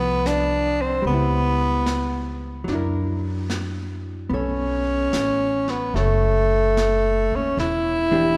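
A breathy, growling tenor saxophone carries the melody of this intimate, tender jazz ballad from the start, up front with raspy scooped notes, over clean, compressed picked chords from a dark hollow-body electric guitar and woody pizzicato upright bass. At 0.3 seconds a vintage brush kit slips in with smooth brushed snare and hi-hat, its top end rolled off. A swung 4/4 feel and rich jazz harmony move beneath the phrase, and a long church reverb gives the fragment, cut from a longer piece, a spacious, resonant glow.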